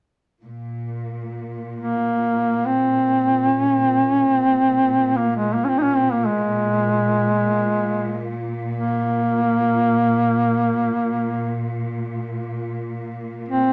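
A wet studio ambience with a short decay surrounds this excerpt of a mournful, longing Caucasian folk lament in free time, tuned to A4 = 442 Hz. A lush symphonic cello section holds a close, bowed drone on Bb2 from 0.4 seconds, smooth and even with vibrato. At 1.8 seconds a solo duduk enters up front, carrying the melody between Ab3 and Eb4 in a folk style, with a warm tone, soft attack, scooped notes and vibrato.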